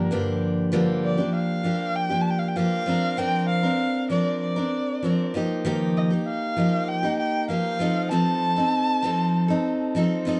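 A straight 4/4 pulse at 98 BPM carries this tender, wistful acoustic pop excerpt in G minor, tuned to A4 = 438 Hz, as the chords move from Gm7 through Bbadd9/F and Ebadd9 to F7. Up front, a full-bodied picked dreadnought steel-string guitar supplies the accompaniment from G2 to Bb4 and plays until 10.4 seconds. Beside it, a single bowed erhu sings the melody between D5 and A5 with a dusky tone, vibrato and smooth portamento, ending at 9.9 seconds, all within a short, wet studio reverb and a dark, warm production.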